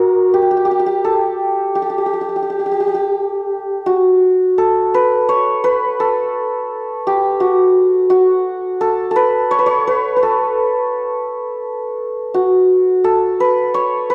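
Persian music in a straight 3/4 feel, passionate and festive, this short cut from a longer piece features a solo santur, its hammered strings shimmering and ringing up front within a compact middle range. The instrument sits in a wet recital hall reverb with a 1.6-second decay, giving the dark production a warm glow. A brief opening phrase gives way at 3.9 seconds to a new section that carries through to 14.1 seconds.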